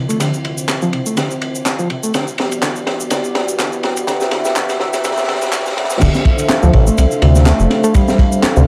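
A swung, gritty breakbeat groove with a funky edge drives this short cut, built on a crunchy, punchy drum kit with a high-tuned snare and dark cymbals, layered with tape-warm electronic shaker and handclaps, while a reedy electric piano riff with fast tremolo and a deep, detuned analog pad over Dm9 and Em9 chords both sweep through a filter during the build-up and drum fill, until a fat sawtooth bass enters at 6.0 seconds for the drop.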